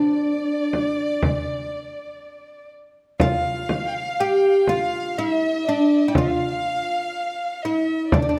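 A woody, fretless oud carries the melody from the start, joined by an expressive solo violin with vibrato and portamento and by an intimate chamber violin section playing sul tasto with a smooth top, both on a second line. At 0.7 seconds a deep, dry frame drum played with soft hands comes in up front, giving this melancholic, soulful Arabic maqam piece a straight 10/8 pulse at 122 BPM, counted in eighths and tuned to A4 = 441 Hz. The ensemble sits in a wet recital hall reverb with a 1.5-second decay, in a passage cut from a longer performance.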